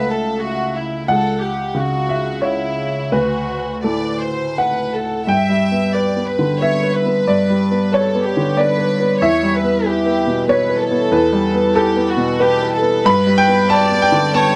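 Neoclassical piano and strings in 3/4 at 80-95 BPM, played with a rubato feel that gives this short passage cut from a longer piece a longing, reflective mood. A woody, slightly detuned upright piano with a vintage character accompanies throughout, while a rich violin section carries the melody with soft-attack sul tasto bowing and a pure, floating tone. Both parts sit up front in a close, detailed, almost dry recording, and the harmony settles onto G at 5.3 seconds as the second section begins.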